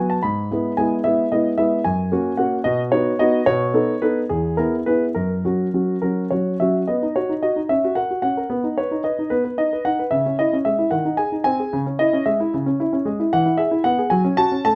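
Set up front in light reverb, a clear concert grand piano with deep bass, natural tone and short sustain plays a playful, cheerful classical-period sonatina alone in B major, moving at 74 BPM in 6/8 with rubato and tuned to A4 = 439 Hz, ranging from E2 to B5 and turning from bright major harmonies to a passage shaded by C#m from 10.1 s, in a fragment cut from a longer piece.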